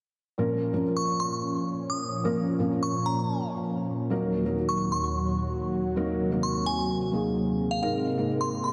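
A glassy, crystalline synth bell carries the melody from 1.0 s, its bright FM tone striking with a fast attack and decaying through chorus, phaser and tape echo high above the rest of this anthemic, emotional EDM passage cut from a longer piece. Beneath it, a felt-muted upright piano plays accompaniment from 0.4 s, its soft, dark, intimate sound thickened by heavy felt, with audible action noise and a lush chorus trailed by diffuse ambient delay. A thick, warbling unison pad of detuned sawtooth voices holds sustained chords alongside, its slow attack and long release giving it a vintage quality under its own chorus. At 129 BPM in straight 4/4 and Bb minor, the harmony moves from Bbm to Ebm at 4.1 s and lands on Abadd9 near the close. The whole mix is dreamy and soaked in a wet hall reverb with small room ambience, all three parts sitting up front.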